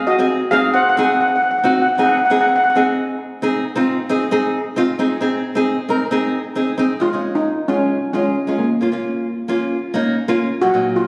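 Captured on a phone in the room, this short cut from a longer calypso piece carries a moderate scoring-stage reverb and compression. It is bouncy and festive, moving in a straight 4/4 at 134 BPM. A double seconds steel pan, played with medium rubber sticks, carries the melody with a metallic, shimmering tone; it sits close-miked, dry, full and up front. The fingerpicked nylon-string guitar plays accompaniment throughout, sounding small, acoustic and warm, and also up front. The pan drops out at 2.8 seconds, leaving the guitar alone until the pan returns at 7.0 seconds, while the harmony moves from Ab7 to Ab, then Db and Bbm.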